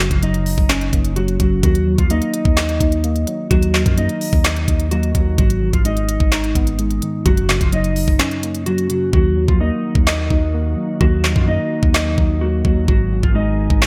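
A half-time trap pulse at 128 BPM in 4/4 anchors this brooding, eerie hip hop excerpt in Eb minor, built on an up-front electronic kit with a knocking kick, woody snare, crisp hi-hats and handclaps set in gated reverb. Beneath it, a deep, sine-toned 808-style bass holds long notes, while a clean electric guitar carries the fingered, compressed melody through lush chorus and a low-pass filter. Muted, felt-like synth keys fill out the accompaniment with a soft, intimate tone, a noise layer and a filter sweep, darkened further by chorus and filtering. A break arrives at 8.2 seconds, after which the hi-hats stay muted, and at 9.8 seconds a very quiet, glassy FM pad slips in with ethereal sustained chords. The harmony cycles through Gb, Ebm and Abm under light reverb and digital ambience, giving the whole a bright 1980s-style digital sheen.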